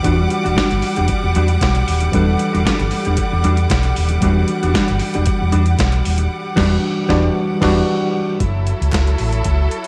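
A sultry, danceable disco groove at 115 BPM in E minor, this short cut from a longer piece rests on an Em9 chord, carried by a round, up-front fingered electric bass and a gritty boom bap sampler-style drum kit with a thumpy kick, medium-tuned snare, hi-hat and crash cymbal. A worn, slightly out-of-tune tine electric piano, a dark background electric guitar with vibrato and a lush, bowed studio string section fill out the harmony, with a band accent from 6.3 to 8.4 seconds before the chords shift to F#m7 at 8.4 seconds. A barely audible group handclap slips in around 8.9 seconds, all set in light digital reverb.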